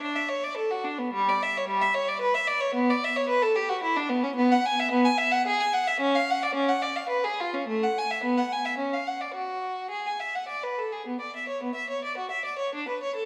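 In a flexible, rubato 3/4 moving at roughly 102-114 BPM, this short cut from a baroque-style suite movement for unaccompanied violin features a single bowed violin, rich and focused with vibrato and sitting up front, ranging from G3 to G#5 across 13.3 seconds in an introspective, grave mood, set in a moderate concert hall reverb.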